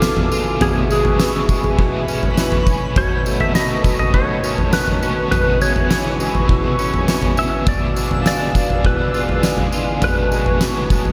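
Dream pop at 102 BPM, blissful and floating, in which a warm, twangy clean lap steel guitar carries the slide melody through analog delay and shimmer reverb over a double-tracked overdriven electric guitar with tremolo and lush chorus, a swirling, nasal phased analog pad holding sustained chords, twangy direct-recorded clean electric guitar arpeggios in the background, a mellow bassoon sounding a classical-style bass line, an up-front oversized low-tuned drum kit with punchy kick, fat snare, tambourine and toms in a pumping stone room, and a very quiet twinkling granular texture that sparkles briefly at 2.0 and 7.8 seconds, all moving through chords such as E7b9/B, Amaj9/B and B9 in a dreamy mix soaked in hall reverb.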